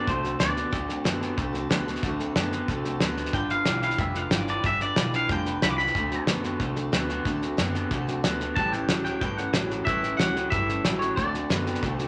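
Rockabilly with a retro, rowdy mood, this short cut from a longer piece moves in a straight four over a dominant-seventh progression from D7 to G7 and back, then A7 before resolving to D7. A twangy, scooped electric guitar carries the clean, picked melody in bursts, first at 0.0 seconds, again at 3.3 seconds and once more from 8.6 seconds to the end. Underneath, a second electric guitar through a small old amp plays an up-front, slightly broken-up riff with a bright, lo-fi bite, while a full-bodied dreadnought acoustic guitar picks out accompaniment in the background. A woody, thumpy pizzicato upright bass and an up-front, cloth-damped drum kit with a fat snare, tight kick, hi-hat and a rolled-off top drive the groove. A wet club reverb gives the band the feel of a small, lively room.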